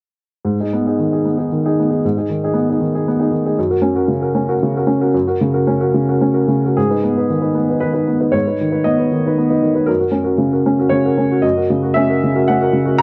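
Neoclassical minimalist piano in a gentle triple metre, wistful and intimate, played with a loose, rubato feel. A lone upright piano carries the whole piece from 0.4 seconds to 13.0 seconds. Its tone is woody and worn, slightly detuned, with a long sustain that lets each chord hang in the air, spanning from F#2 up to A#5. The harmony rocks between two chords, and a second passage beginning at 6.8 seconds repeats that same pairing. The close, dry studio sound, in a 1970s style with little reverb, keeps the instrument present and up front, as if the listener were seated beside it, in this short section cut from a longer piece.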